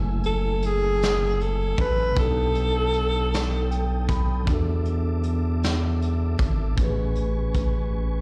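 Slow six-eight R&B with a sultry, late-night mood, this short excerpt is cut from a longer piece and moves through F#m9, B7alt, E7sus4 and Amaj9. A breathy tenor saxophone carries the melody from 0.3 to 4.1 seconds, up front, with vibrato, soft attacks and scooped notes in a jazz style. Underneath, a mellow tine electric piano plays the accompaniment with a slapback echo and adds a fill between 3.3 and 4.5 seconds, while a smooth tonewheel organ holds sustained chords with chorus vibrato, key click and a stopped rotary speaker. A deep, round analog bass sits up front with fast attack and sustained notes, and a vintage brush drum kit with a punchy kick, medium-tuned snare and hi-hat is played with brushes for a warm, rolled-off, acoustic sound. The sound is that of a live gig heard through the venue's PA, with a recital hall reverb and some lossy compression artefacts.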